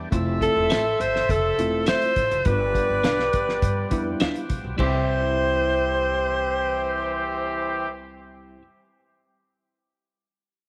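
Joyful and warm, this short excerpt of uptempo 1960s-style soul puts a breathy, up-front alto saxophone on the melody, with vibrato, subtone and scooped notes, over a dark, vintage horn section carrying a tight second line with slapback echo. Underneath, a woody pizzicato upright bass, a worn, slightly out-of-tune tine electric piano, and a cloth-damped, thuddy drum kit with a fat snare and dark cymbals drive things along, while very quiet, ringing congas add color; the drums drop out at 4.9 s, and the congas follow at 5.1 s. In the background, a gritty overdriven tonewheel organ holds sustained chords through a slow rotary speaker and a compressed, clean electric guitar picks out stabs, all set in a light small-room reverb.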